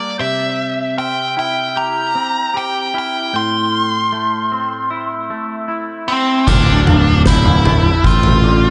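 A big arena sound with a lush hall reverb frames this brooding, cathartic post-rock excerpt, where a nasal, overdriven lead guitar with a parked wah carries the melody up front through slapback echo and digital delay over clean, twangy guitar arpeggios steeped in chorus and soft, bell-like glockenspiel arpeggios in the background, until at 6.5 seconds a fuzzy, punchy picked bass and an oversized, low-tuned drum kit with a boomy kick, fat snare, toms and crash cymbal arrive as the chords move from C7 and Am7 to Dm7.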